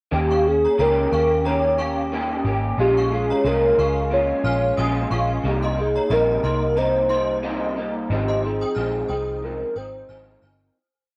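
A lightly swung 90 BPM groove in 4/4 carries this mellow, hazy bedroom-pop piece, where a hollow, woody clarinet-like synth lead sings a hook-driven melody through analog chorus and tape echo over slightly broken-up jazz chord strumming on an electric guitar through a small old amp, a round, foam-muted picked bass line, and a chiming, inharmonic FM synth figure doubled in sixths, all moving through Eb7, Bbm7, Cm7 and Ab6 with a cassette-recorded softness before fading out from 8.1 to 10.8 seconds.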